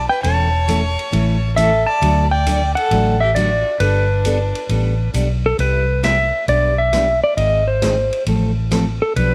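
Western swing country with a swinging, down-home mood, this short excerpt is led by a dark, compressed lap steel guitar playing the melody up front with slide and volume swells, while a smooth, lightly vibratoed fiddle carries a second line until 5.1 seconds. A round, foam-muted electric bass sits up front beneath a bright dreadnought acoustic guitar picking the accompaniment, and a natural-sounding big-band drum kit with punchy kick, snare, hi-hat and ride swings along. The harmony takes a colorful turn after 5.6 seconds, moving through Cmaj7 and G/B to Ab, all set in a small room with light reverb.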